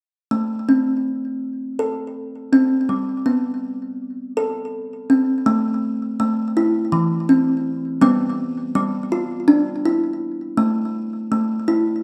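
A woody, thumb-plucked solo kalimba with a touch of delay sits up front in this hypnotic, meditative world excerpt in A minor, moving through 7/8 at 164 BPM with a straight feel over Am and G chords before settling on A5 at 10.6 seconds, all wrapped in a dark production with a moderate echo-chamber reverb and small-room ambience.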